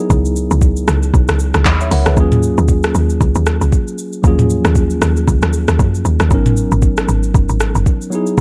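A swung 16th-note groove at 116 BPM in 4/4 drives this deep, hypnotic amapiano excerpt, carried by an up-front electronic R&B kit of soft kick, warm hi-hat, handclaps, rim click, shaker and toms, which sounds re-recorded in a small room. An equally forward log drum bass adds punchy, woody hits with a fast attack and a decaying noise-tinged tail. A clean tine electric piano, heard as if through built-in speakers, comps Dbm11, Ebm11 and Abm11 chords in Eb minor and plays a brief fill at 1.4 s, all within a dry, dark mix.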